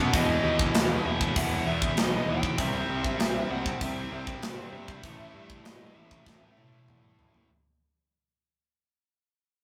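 Up front and polished, a tight metal drum kit with a medium-tuned snare and a tight kick drives this epic, heavy metal fragment at 98 BPM alongside a scooped high-gain guitar riff, a bright distorted rhythm guitar in the background, a growly fuzz picked bass and a dark overdriven lead guitar melody through a small cranked amp, all moving over E5, C and A5 chords in a rough rehearsal-room sound with warm saturation, as the whole fades out and a drum fill closes it from 6.3 seconds.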